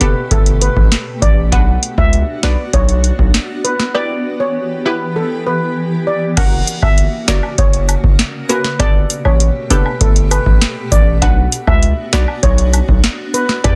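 Hypnotic and sultry, this dancehall excerpt at 99 BPM in B minor sets a mellow, shimmering steel pan melody with tape echo over warbling, detuned sawtooth chord stabs with chorus and phaser, a blurred, evolving granular cloud pad with sidechain pumping, a saturated, hard-hitting 808-style bass and a booming analog drum machine with a deep kick and metallic hats, while a break arrives at 3.9 seconds and background woodblock and cabasa join at 6.4 seconds in a dense, heavily limited mix.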